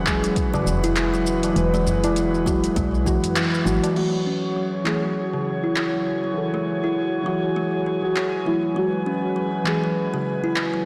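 This mystical, meditative stretch of organic downtempo opens on a deep, mellow chord stab with a nasal edge, an airy, breathy pad and a round, woody FM bass, each pumping against the sidechain, over an Eadd9 chord in F# minor at 100 BPM with a swung 16th-note feel. Almost at once a deep house kit of metallic hi-hats, handclaps, shaker and crash arrives alongside a tape-toned electronic kick, while a kalimba spins bright, hollow-boxed arpeggios through a low-pass filter and digital delay, and a high-tuned tabla rings in the background. The kick drops out at 3.4 seconds on a band accent, and the bass and tabla soon fall away, leaving the kit, stab, pad and kalimba to carry a move to F#m7. From 4.6 seconds a faint, glassy texture of drifting overtones holds a sustained G#4, before the harmony returns to Eadd9. A lush hall reverb surrounds the mix, yet the recording itself is blown-out and overdriven, lending the calm material a gritty, saturated sheen.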